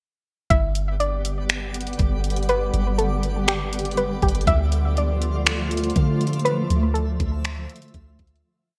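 A sparse half-time beat at 121 BPM in 4/4 drives this short, complete piece of atmospheric cloud-rap in D dorian, with a smooth R&B-style electronic kit of knocking kick, tape-warm hi-hats with fast rolls and finger snaps set up front under gated reverb. Beneath it, a soft, round 808-style bass holds long, dark sub-bass notes that follow the kick, while a gentle pluck traces a sparse looping melody between G4 and E5, repeated like a sampled loop and softened by chorus, a low-pass filter and delay. From 0.9 seconds a faint twinkling granular layer adds an octave-up shimmer, and from 1.1 seconds a cloudy, evolving granular pad spreads blurred, mellow chords that pump against the sidechain. The harmony moves from G to Dm at 4.5 seconds, and the whole verse begins to fade at 6.5 seconds, leaving a spacious, melancholic mood. The sound is bright and digital in a 1980s style, sitting in light reverb and a digital ambience.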